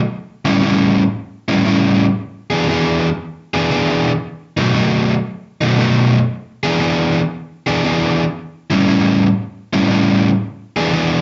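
Swaggering and gritty, this short blues fragment swings at 116 BPM in E mixolydian, cut from a longer live performance. A single overdriven semi-hollow electric guitar carries everything up front from 0.4 seconds to 11.2 seconds, its picked, hollow-bodied tone thickened by slapback echo as it works through A7, E7 and B7 changes in two sections that turn at 6.3 seconds. The sound comes through a club PA with a moderate room reverb and a dull, rolled-off top end.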